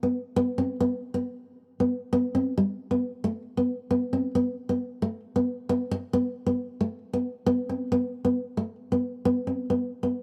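This highlife excerpt moves at a danceable 135 BPM in a straight 4/4, with a bittersweet mood carried by a lone fingerpicked nylon-string guitar that plays for the full 10.2 seconds within a narrow span from G3 to C4. The guitar sits up front with a warm, full-bodied, deep classical tone. The dry, close sound recalls a 1970s studio, and the clip is cut from a longer piece.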